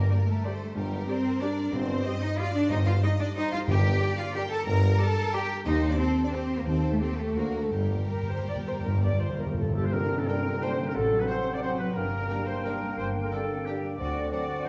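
Bittersweet and dark, this orchestral ballroom waltz in G minor sways in 3/4 with a rubato feel between 153 and 198 BPM, its clear, vibrato-rich violin section carrying the melody over a distant second violin line, smooth violas, lush cellos and double basses, a ringing harp in the background and a roomy tuba that drops out at 9.1 seconds. Soft-mallet timpani add a round fill from 7.7 seconds, leading to an accent at 9.9 seconds where a quiet, dry tam-tam strikes and the winds arrive: a distant oboe slipping in just ahead of a mellow clarinet, a pure silver flute and a vintage-toned bassoon, joined by very quiet, soft-attack French horns on sustained chords. The recital-hall reverb gives the dark production a lingering, wet glow, and the passage is cut from a longer piece.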